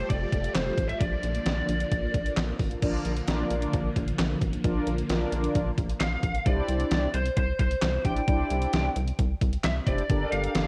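Synth-pop at 132 BPM in 4/4 with a straight feel, melancholic and nocturnal in mood, heard as a short cut from a longer piece. A detuned 8-bit digital drum machine drives it from 0.1 seconds with a thumpy kick, medium-tuned snare, hi-hat, handclaps and crash cymbal, sampler-style and re-recorded in a large room, while a rubbery, hollow square bass bounces up front with a resonant filter pluck and dark tone throughout. A swirling, bright phased string machine holds sustained chords with ensemble chorus until 6.4 seconds, and from 2.8 seconds a mellow, round synth brass, dark and brassy with chorus, takes up the accompaniment. An overdriven lead guitar through a small cranked amp plays a picked, lo-fi melody at the opening and returns at 6.0 seconds. The harmony moves from Fadd9 to Bb, then to Cadd9 and finally Gmadd9, and the whole mix sits in light reverb with a worn, warbling cassette-tape pitch drift.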